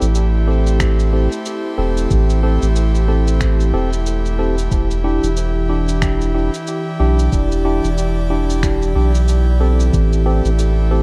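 A deep, hazy ambient dub fragment opens with an airy, breathy pad holding sustained chords under a soft chorus, while a clean tine electric piano places stabs that trail off into dub echo. Underneath, a round, soft sub bass sits up front in the lowest register, and pitched-down, muffled shaker and finger snaps tick along quietly with their own dub echo. A compressed, thumpy electronic kick drum arrives at 0.8 seconds and stays in the background, carrying the roomy character of a large space. The harmony drifts from Am7 to Em7 and back to Am7 near the close, over a swung, loping groove. The overall mix is dry and close, and the passage is cut from a longer piece.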